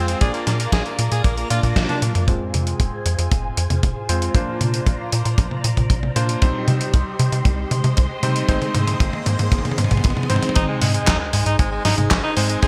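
Melodramatic and bittersweet, this short italo disco excerpt opens with an edgy, forceful alto saxophone line carrying vintage sampler grit and digital delay, which returns at 10.6 seconds after a long stretch given over to the band. Beneath it, a swirling phased string machine holds sustained chords, a bright, cutting electric grand piano plays stabs that get a filter sweep in the middle passage, and a punchy sawtooth sequencer bass drives alongside a dry, up-front kick and a gritty, tape-toned sampler kit of handclaps, hi-hat, snare and toms with gated reverb. A very quiet electronic riser and sub drop enters at 5.8 seconds, building toward an impact, all framed by bright 1980s-style digital production with a plate reverb.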